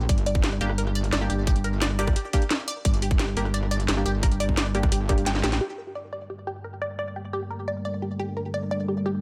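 A straight 4/4 pulse sets up this short cut from a longer piece of dark technical drum and bass, with a futuristic, mechanical mood. A tight, up-front electronic kick runs from 0.1 to 5.2 seconds, joined by a layered kit of cracking snare, rim clicks and metallic hi-hats, which ends its run with a drum fill and a band accent just before 5.6 seconds. Underneath, an aggressive FM wobble bass growls with a saturated, compressed edge and chorus, while a lush, detuned unison pluck spins arpeggios through phaser, digital delay and sidechain pumping. Muted dub chord stabs flicker in at 0.6 seconds, filtered and touched with chorus and delay. After the bass and drums drop out, a moody, detuned sawtooth pad with a sub octave and slow attack holds sustained chords from 6.4 seconds while the pluck's filter sweeps through to the close. The mix is dry and close, with little reverb.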